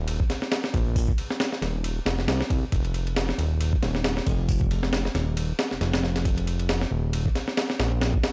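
Breakbeat at 136 BPM in 4/4 with a swung sixteenth-note feel, funky and swaggering, cut from a longer piece. A fat, detuned sawtooth analog bass with a plucky filter, fast attack and sustained, saturated tone sits up front from Eb1 to C2, beside a compressed, pitched-up sampler-style drum kit of thumpy kick, medium-tuned snare, hi-hat and ride cymbal with small room ambience and a tape-like character. The whole roughly eight-second passage is a single section with a dry, gritty hardware sound and transformer saturation.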